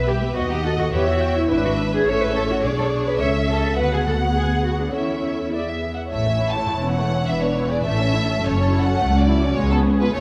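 The double bass section stands out most, its woody, dark bowed tone sitting up front at the bottom of this spirited, lively classical-period movement for string orchestra in a straight 2/4. Above it, a warm first violin section carries the melody from a distant place in the mix, its vibrato expressive and lush. A dark second violin section traces a second line, while the violas supply accompaniment with vibrato and portamento, and the cellos, distant and shaded, join the basses in the low register with their own sliding portamento. All five sections play throughout, passing from an opening section into a new one at 6.1 seconds, with harmony that moves briskly through chords such as Em, A and F#m7 before settling on a C#7 with the third omitted. A moderate concert hall reverb gives the ensemble an airy sense of space, and the clip is cut from a longer piece.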